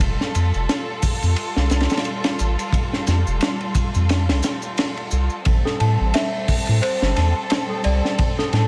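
Trip hop with a brooding, cinematic mood, this short excerpt moves at 88 BPM in 4/4 with a swung sixteenth-note feel in A minor. A crunchy, saturated breakbeat kit sits up front, its punchy kick, high-tuned snare and dark cymbals on hi-hat and ride rolled off at the top, while a round analog bass with a deep, nasal tone anchors the low end. Behind them, a distant symphonic string section holds lush, woody bowed chords with vibrato, and band-limited maracas rattle in the background until 5.4 seconds. The kick drops out from 4.1 to 5.5 seconds. Once the harmony shifts from Fadd9 to Am7 at 5.5 seconds, a worn, slightly out-of-tune celesta enters at 5.7 seconds with bell-like, delicate arpeggios trailed by digital delay. Studio reverb and vinyl crackle give the whole a dusty, vintage atmosphere.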